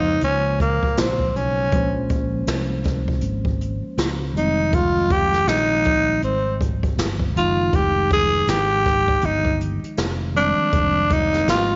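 Bathed in a moderate echo-chamber reverb with a dulled top end, this cool, nocturnal jazz-hop excerpt at 80 BPM, with a swung 16th-note feel, puts a breathy, raspy, growling tenor saxophone up front over a mellow tine electric piano, a round, punchy fretless electric bass and a distant, roomy brushed drum kit with a boomy kick, moving from Bbm9 to Fm9 at 4.4 seconds.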